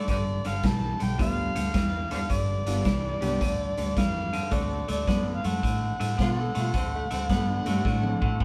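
A band playing live in one small room gives this clip of an electric blues shuffle a close, lively sound with a moderate touch of reverb, and a gritty, swaggering mood at 108 BPM with a swung 4/4 feel in D mixolydian, tuned a little below standard pitch. An overdriven, amplified harmonica carries the melody from the first second, with light vibrato, scooped notes and tongue slaps in a jazz-inflected solo style, while a clean, twangy, compressed electric guitar picks out a riff beneath it. A foam-muted, round-toned fingered electric bass and an up-front garage drum kit with a punchy kick, medium-tuned snare and rolled-off top hold down the groove over G7 moving to D7. A brilliant, woody upright piano enters at 1.2 seconds, sitting in the background with its action noise audible. At 6.2 seconds a breathy, raspy tenor saxophone joins with a growling second line, and the drums close the passage with a fill at 7.8 seconds.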